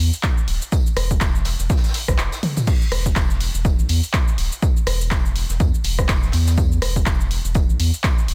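Deep house at 123 BPM with a swung, moody and hypnotic feel, cut from a longer piece. A round, deep analog bass with a dark, sine-like tone pumps against an up-front, punchy electronic kick, while a small-room analog drum machine supplies handclaps, hi-hat, rim click, shaker, toms and a crash cymbal. A smooth brushed kit with a rolled-off top sits in the background under a dense, heavily limited, nearly dry master, and a short break around 2.2 seconds brings a drum fill at 2.4 seconds.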